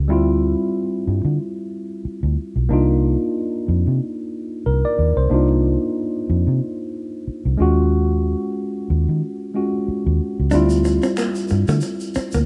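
Lightly swung sixteenths in 4/4 carry this soulful, smooth neo-soul R&B excerpt, where a worn, slightly out-of-tune tine electric piano and a round, punchy, foam-muted fingered bass sit up front from the start, moving through minor eleventh chords from Dm11 to Cm11 and Ebm11. At 10.5 s a dark, compressed hollow-body jazz guitar adds a soft second line, while a distant tube shaker and finger snaps join in the background. A lush hall reverb surrounds the parts in a rough home demo mix.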